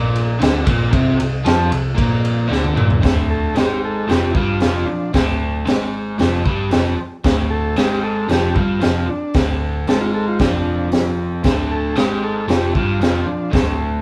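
A crunchy, double-tracked guitar riff and a round, dark hollow-body bass open this swaggering, raw garage rock cut in D minor at 114 BPM, with an up-front breakbeat kit joining at 0.2 seconds with a high-tuned snare, tight kick and gritty saturation; a drum fill at 2.5 seconds leads into a move from Bbadd9 to Dm, where a reedy vintage combo organ with light vibrato and overdrive enters at 3.3 seconds, the band sounding live in one room with moderate reverb.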